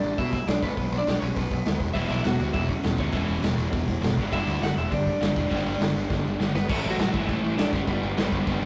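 A rowdy, energetic punk rock cut at 203 BPM opens on a dark, slightly broken-up lead guitar melody over a fuzzed, overdriven picked bass and a raw garage drum kit that sits up front with a punchy kick and gritty, saturated crash, hi-hat and snare. At 1.9 seconds three picked riff guitars join under the E5 to G5 changes: a very quiet crunchy one, a double-tracked, compressed distorted one, and a bright, tight distorted one that drops out at 6.5 seconds. A drum fill from 6.1 seconds leads into a brief A to G passage, all captured as a rough rehearsal-room recording with light reverb and warm saturation.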